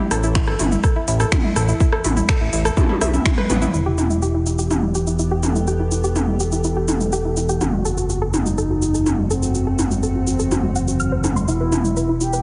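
This melodic techno excerpt opens on a soft, round pluck playing mellow arpeggios in E minor at 124 BPM, treated with chorus, dub echo and sidechain pumping. A very quiet, nasal analog drone sits low beneath it. A fat, detuned sawtooth bass and an up-front techno drum kit join them, with finger snaps, smooth hi-hats, rim clicks, shaker and toms, their percussion, hats and toms pumping against the sidechain. A punchy electronic kick drives the opening until 3.4 seconds, while a drum fill from 2.8 seconds leads into the main section. At 3.7 seconds an expressive sawtooth lead takes the melody, with vibrato, portamento, subtle chorus, dub echo and a filter sweep, over chords that move from Em to F#dim and back. From 5.0 seconds an evolving, morphing wavetable pad adds sustained chords in the background, and the whole hypnotic, melancholic piece carries a heavily compressed, radio-like sound with light reverb and a dulled top end.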